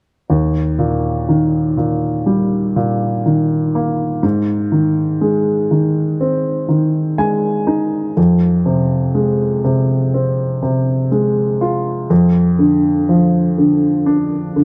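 A slow, straight four-beat pulse carries this tender, emotional pop fragment, cut from a longer piece. A single upright piano supplies the accompaniment from 0.3 to 14.6 seconds, ranging from deep bass notes up into its upper register. Its woody, vintage tone has a short sustain and sits up front, lending the chords a close, intimate quality. Between 6.7 and 8.2 seconds the piano plays a brief fill before the harmony moves through a minor chord and on to a final chord over a bass note other than its root. Light reverb and a dark, warm production give the recording a soft, nostalgic glow.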